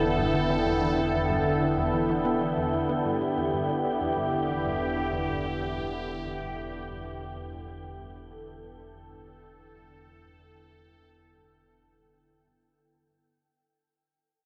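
A sweeping, airy pad of bright, detuned sawtooth chords sits up front in this mysterious, cosmic stretch of sequencer-driven space music, joined by a squelchy, resonant blip-pluck riff carrying chorus and delay in the background, a fat analog bass on a low E, and a breathy, wind-like noise texture, while the mix is bathed in huge reverb and the warbling pitch drift of worn cassette tape as the 13.3-second excerpt fades out over an Em7 chord.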